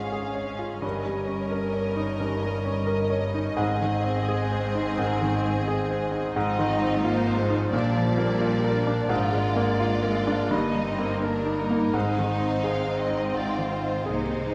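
A clear, up-front concert grand piano with deep bass and long sustain carries the lyrical, passionate melody in this romantic classical movement in Ab major at a rubato 86 BPM, joined by lush violins with vibrato, a second violin line with portamento, a background viola section, a rich cello section and a dark double bass section, while a distant French horn section holds sustained chords from 0.8 s and round, barely audible timpani sound at 7.7 s, all in a moderate scoring-stage reverb.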